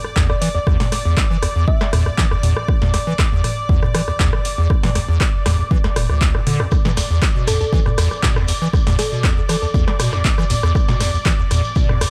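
Raw and driving, this acid house excerpt rides a punchy, up-front electronic kick and a booming analog drum machine with crisp snare, metallic hats, handclaps, rim click and toms, while a squelchy, resonant square-wave acid bass riff with a filter sweep, tube saturation, chorus and analog delay carries the groove. A lush, detuned sawtooth pad holds sustained chords under sidechain pumping, and a round, tine-like FM pluck, something like a thumb piano, plays brief melodic phrases from 0.3 s and again from 7.5 s. A grainy, distant shekere joins at 6.7 s, all within a dry, gritty hardware sound with transformer saturation.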